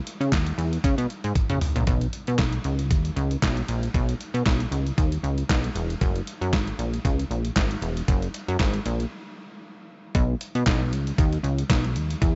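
Early-eighties boogie funk in B major at 116 BPM with a feel-good, smooth swing, this brief excerpt pairs a detuned, tape-warm 8-bit drum machine (thumpy kick, medium-tuned snare, handclaps, hi-hat and toms, re-recorded in a large room) with an up-front, punchy sawtooth-and-pulse analog bass whose fast-attack filter pluck decays, all under light reverb and a dark, rolled-off top, with a drum fill at 1.4 seconds and a break at 9.1 seconds before a new section arrives at 10.1 seconds.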